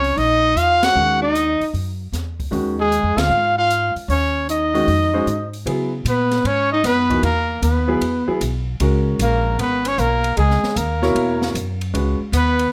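A clear, up-front trumpet with vibrato and scooped notes leads this cool, hypnotic modal jazz excerpt at 153 BPM with a swung feel, alongside a breathy, whispered tenor saxophone second line, carried by a woody, thumpy pizzicato upright bass and an open studio drum kit with a high-tuned snare and boomy kick, joined at 1.0 s by a smooth vintage grand piano, with band accents at 0.8 and 3.1 seconds and a move into C# dorian at 5.7 seconds, all in moderate studio reverb.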